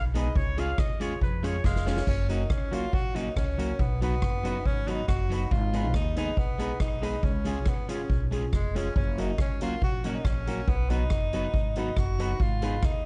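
A distant, scooped trumpet solo opens this joyful, cheerful ska excerpt at 140 BPM in F# major over growly pizzicato upright bass, twangy slightly broken-up electric guitar, background stabs of woody upright piano and an up-front street-band drum kit with a boomy kick, and from 1.6 seconds, alongside a drum fill that runs to 2.1 seconds, a breathy, intimate tenor saxophone with slapback echo enters and carries the melody through a dark, small-room production.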